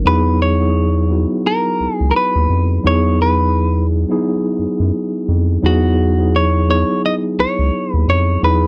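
A dry, close studio sound with a 1970s feel frames this short neo-soul R&B excerpt, soulful and unhurried at 86 BPM with a gentle sixteenth-note swing over a sustained Emaj9. A mellow tine electric piano comps cleanly up front while a round, deep analog bass with a fast pluck and nasal edge sits slightly louder beneath it. From 0.1 seconds a dark, compressed semi-hollow electric guitar carries the picked melody, its clean tone doubled by a slapback echo.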